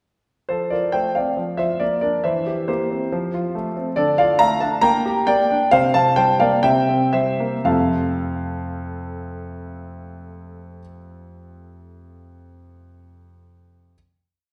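In a flexible, rubato 4/4 moving between 112 and 142 BPM, this short classical-period piano sonatina in F major unfolds with a playful, graceful character, then slows from 3.1 seconds toward its close. A solo concert grand carries the whole piece, its tone clear and slightly worn, with a deep bass and a short sustain that keeps each note crisp, set up front in the sound. The tune moves in thirds over a broken-chord bass, spanning F2 to Bb5 as the harmony passes through F, Bb/F and C7/E, then Dm, Gm/Bb and a C7sus4 resolving through C7. The single brief section arrives at a final F chord at 7.7 seconds, which rings until about 11.7 seconds. A wet reverb from a church or concert hall surrounds the instrument, lending the complete little piece a spacious, resonant setting.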